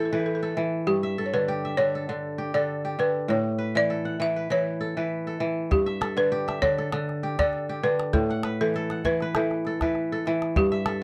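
A ringing, fingerpicked kora sits up front, spinning arpeggios beneath a woody, buzzing balafon melody played with hard rubber mallets in this flowing, joyful excerpt of West African traditional string and xylophone music at 99 BPM in G lydian, with a lightly swung sixteenth feel, chords moving among A5, G5 and A in a dry, close 1970s-style studio sound with light reverb, and a small calabash joining at 5.7 seconds.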